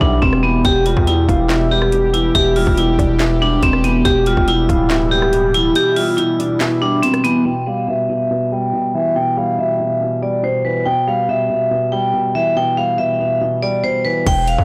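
A ringing vibraphone played with hard mallets carries the melody of this menacing, melancholic half-time trap piece through tape echo, over a mellow concert grand piano, a nasal sweeping pad and a soft octave-layered synth lead in the background, while a distorted, up-front 808-style bass and a trap kit with a hard-clipped kick, sharp snare and metallic hats drop away by 7.3 seconds, giving way to a filter sweep from 7.5 seconds until both return briefly at 14.3 seconds in a blown-out, overdriven mix.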